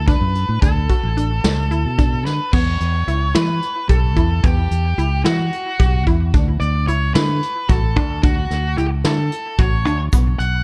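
Intricate and driving, this fragment of a progressive instrumental in 7/8 sets a dark, fuzzy octave-fuzz lead guitar melody, echoed by delay, over a direct, up-front fingered electric bass and a vintage brush drum kit with a punchy kick and dusky cymbals, while a bright, squelchy resonant blip pluck spins chorused arpeggios and a grainy tube shaker slips in faintly at 10.1 seconds.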